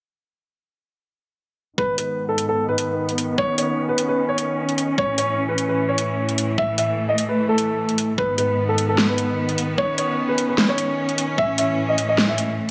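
Heavy wobble dubstep with an aggressive, weighty mood, this clip from a longer piece moves in a half-time feel with a slight swing. A dark, mellow grand piano carries the melody through tape echo, while a rich symphonic string section holds bowed chords beneath it, close and biting with light vibrato, pumping against the sidechain and passing through a low-pass filter sweep. An electronic kick drum with a knocking, layered punch enters at 1.8 seconds and drops out at 11.5 seconds, shaped by a high-pass filter. From 2.0 seconds a dubstep drum kit sits up front with a huge snare and metallic hats, and both drum parts carry a tape-warm, produced character. The harmony circles through G#m, Badd9, A and A5, set in light reverb and studio ambience.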